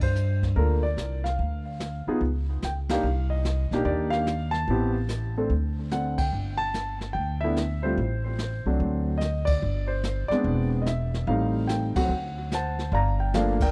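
A swung jazz piano trio in G minor opens all at once at 146 BPM, with grand piano, upright bass and brushed drum kit sounding together from the first beat in a smoky, moody mood. The piano carries the melody with an intimate, natural tone, its action noise audible and its deep low register full, all touched by a tape echo. Beneath it, the pizzicato upright bass sits up front with a woody, thumpy sound from its steel strings. The brush kit stays dark and smooth, with shadowed cymbals, a medium-tuned snare and a boomy kick. The trio hits shared accents at 0.0, 6.1 and 11.9 seconds while the harmony moves from Gm7 through Cm9, E7b13 and Am7b5 to D7, resolving on Gm9. The dry, close sound of a small 1970s-style studio room frames this cut from a longer piece.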